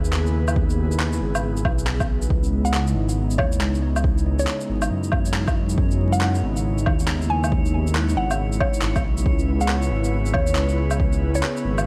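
An airy, breathy pad holds a C#m7 chord from the first moment, pumping gently against a dark, detuned saw bass that rumbles up front, while a layered electronic shaker, handclaps and woodblock tick along. This is a ghostly, rainy slice of future garage in C# minor at 138 BPM, swung on the sixteenths and cut from a longer piece. A punchy electronic kick arrives at 0.6 seconds, and at 2.6 seconds a woody, round mallet-like synth pluck takes the melody, its mellow tone coloured by chorus, phaser and delay. A glassy texture of drifting overtones enters at the same moment, sitting calmly in the background with its own reverb. Vinyl crackle and a light digital ambience frame the whole passage.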